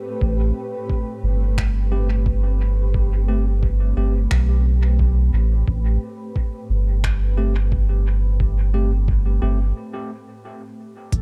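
A cloudy, evolving granular pad on Am7 opens this spacious, meditative ambient dub excerpt in A minor at 88 BPM with a swung 16th feel, soon joined by a deep, round sub bass up front and a muffled, thumpy kick in the background, then crisp overdriven finger snaps and hi-hat with dub echo, bright bell-like electric piano stabs from 1.9 seconds, and a faint glassy texture of drifting overtones that surfaces at 11.1 seconds in an echo-heavy digital ambience.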